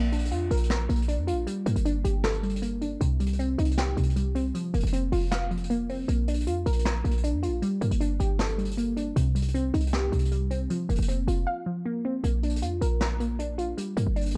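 This excerpt has a dark, warm production set in a small room. It is a wistful, dreamy piece of half-time trap, carried by a glassy wavetable pluck whose crystalline, fast-attack notes decay, colored by chorus and a low-pass filter sweep that keeps them mellow and up front. Beneath it, a short 808-style bass sits punchy and tight, a sine tone with a noise layer that hits fast and fades. A jazz brush drum kit plays hi-hat and a medium-tuned snare with brushes, sounding acoustic and natural at a lower level than the other parts. The chords cycle through Bb, Gmadd9, Cm and Fsus4, a break arrives at 11.5 seconds, and a brief new section from 12.2 seconds moves from Bb to Gm before the cut.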